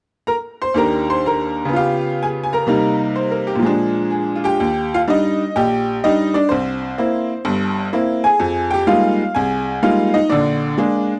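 Solo jazz in Eb major, this short cut from a longer piece has a playful, swinging mood at 126 BPM in 4/4, with a swung eighth-note feel that also bends into rubato. A lone tack piano carries everything, entering at 0.3 seconds and playing until 11.2 seconds across a range from G1 up to C6. Its tone is metallic and jangly, with a percussive, vintage bite that sits bright and up front in the mix. The harmony moves from Ebmaj7 through Db7#11, Cm7 and Bb7 in the opening stretch, then shifts at 4.6 seconds into a new passage built on Ebmaj7, C7, Fm11 and Bb7. The sound is dry and close, in the manner of a 1970s studio recording, with light reverb and a small room ambience giving the instrument a natural presence.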